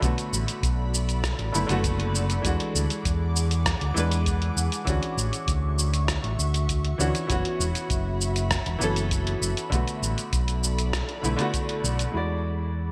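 A straight 4/4 groove at 99 BPM from a gritty, compressed sampler-style kit of filtered hi-hat, rim click and shaker in gated reverb, plus a deep, tape-warm electronic kick that drops out at 11.7 s, drives this wistful, smooth sunset chillout clip in B dorian, where a round, overdriven fingered electric bass sits up front beneath a clear baby grand piano with delay and an ethereal, detuned pad with chorus and phaser, moving through Bm7, E9, Dmaj9 and F#7sus4 with light reverb and a bright 1980s-style digital sheen.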